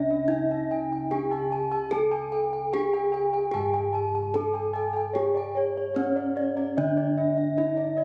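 Javanese gamelan in C# pelog, this short excerpt moves at a stately 74 BPM in a straight 4/4, its tuning set slightly below standard pitch with A4 at 436 Hz. A bronze metallophone sits up front carrying the melody, its wooden-mallet strokes ringing with the shimmering beats of paired tuning. A second bronze metallophone, close-miked, dry and full, plays arpeggios in a higher register, alongside bossed gongs struck with padded beaters that sound mellow, soft and round. Deeper bossed gongs anchor the bass, dark and smooth, reaching down to C#2. All four parts play throughout the 8 seconds, set in a moderate recital-hall reverb with a 1.5-second decay, captured on a phone in the room.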